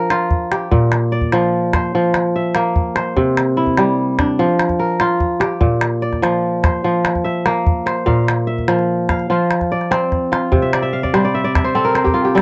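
Hypnotic and joyful, this short passage of West African traditional string music moves at 98 BPM in a 12/8 metre, cut from a longer piece. The kora carries the music from the first instant, playing fingerpicked arpeggios across a span from Bb2 to F5 with a mellow, ringing, crisp tone that sits up front. A small calabash enters at 0.1 seconds as percussion, its acoustic sound placed a little further back and carrying a small-room character. The harmony circles through Fsus24, Bb and C in the opening section, then shifts to bare Bb5, F5 and C5 chords when a new section begins at 8.1 seconds. At 10.6 seconds the kora adds a fill that runs to the close. The recording is dry and close in a 1970s studio style, with a moderate booth ambience.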